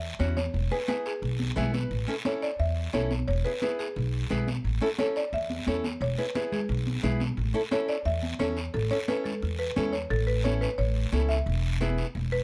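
A buzzing, dark marimba struck with medium mallets carries the melody over a woody, pizzicato upright bass from the very start of this sunny, festive cumbia at 176 BPM in A major, joined at 0.2 seconds by bright, fingerpicked nylon-string guitar that adds a short fill at 1.4 seconds, along with ringing, high-tuned congas played with soft hands and a raspy guiro, the whole captured by close, detailed microphones with little reverb.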